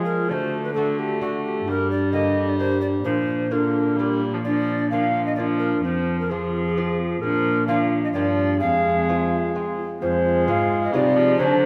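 A hollow, airy tenor recorder on the second line sounds alongside a crisp, expressive tenor recorder that carries the melody from 0.1 s in this rustic, solemn renaissance-style consort dance in 3/4 at 130 BPM in F dorian, over a delicate fingerpicked lute with double gut strings in the background, a rich, reedy period-style viola and a nasal bowed cello bass, heard from further back in a wet stone room in a passage cut from a longer piece.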